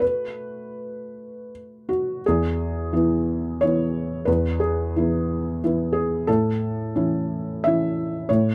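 Neoclassical minimalist piano in a hopeful, peaceful mood, this short excerpt features a felt-muted upright piano playing solo in a rubato 3/4, its soft, mellow, intimate tone carrying audible action noise and short sustain, set up front in a dry, close 1970s-style studio sound with light reverb, moving from a B5 chord to E at 2.2 seconds and to A at 6.3 seconds.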